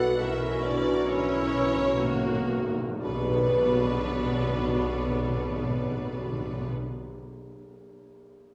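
Solemn and elegiac, this brief fragment of a slow romantic orchestral movement in 3/4 moves with a rubato feel, slowing down over its first 3.0 seconds. A rich, bowed violin section carries the melody with smooth vibrato from a distance, while a lush, very quiet second violin section, a mellow silver flute with rolled-off highs, and very quiet solo clarinet and oboe weave secondary lines around it. Beneath them, a warm viola section and a dark bassoon fill the accompaniment, a dark French horn section holds sustained chords, and a ringing, fingerpicked harp spreads arpeggios across the texture until 7.1 seconds. The bass is anchored by a rich cello section, a woody double bass section and a soft-edged tuba, with round, soft-mallet timpani entering at 0.2 seconds for a fill over an F#7/B chord. At 3.0 seconds the harmony settles on B minor as the ensemble strikes an accent and a dark, dry tam-tam joins. 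A wet recital-hall reverb places the orchestra further back in the room.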